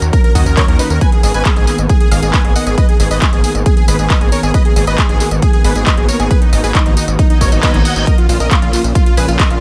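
Uplifting trance with an emotional, soaring mood, heard in a short cut from a longer piece. A punchy, up-front electronic kick anchors a big-room dance kit of handclaps, metallic hi-hats, ride cymbal and tambourine, while a gritty, nasal, distorted synth bass with oscillator sync and a filter sweep pumps against the kick. A lush, warbling unison pad with a vintage, full-bodied character holds sustained chords through a chorus effect, and a huge, thick, detuned supersaw carries the melody with vibrato and tape echo. Alongside it, a very quiet, airy supersaw stab with a noise layer and evolving filter sweep plays a second line. The harmony moves from Ebm7 to Abmadd9, and a background reverse cymbal from 7.4 to 8.1 seconds leads into a Bbm chord, all in a dry mix.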